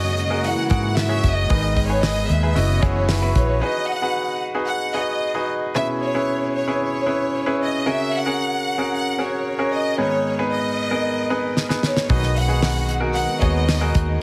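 Warm and uplifting, this piano-driven pop passage sets a bright, polished grand piano under a lush, vibrato-rich violin section carrying the melody, with a distant French horn section on a second line and a very quiet, focused studio string section holding sustained chords. A dark, round, foam-muted electric bass and a dry 70s drum kit with a fat snare and tight kick play at the opening, then drop away so piano and violins carry the middle. The drums return with a fill at 11.6 seconds, and bass, horns and strings rejoin by 12.1 seconds, all within a roomy hall reverb and a heavily compressed, radio-style sound.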